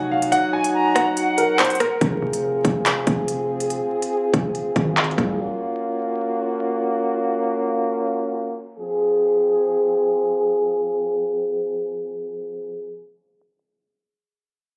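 Tense and dark, this half-time drill excerpt at 142 BPM in F phrygian opens with an intimate concert grand piano melody, joined at 0.5 seconds by a reedy, airy flute line, both carrying digital delay, over mellow, roomy French horn section chords that sustain to 12.9 seconds. A hard-hitting, punchy 808-style sine bass and an up-front electronic drill kit with a hard-clipped kick, crisp hats, handclaps and rim clicks fill the first half, with the kick muted from 0.3 to 2.0 seconds and a filter sweep running through the middle section. The recording sounds as if captured on a phone in the room, bathed in club reverb and dulled by a low-pass filter, light reverb and vinyl crackle.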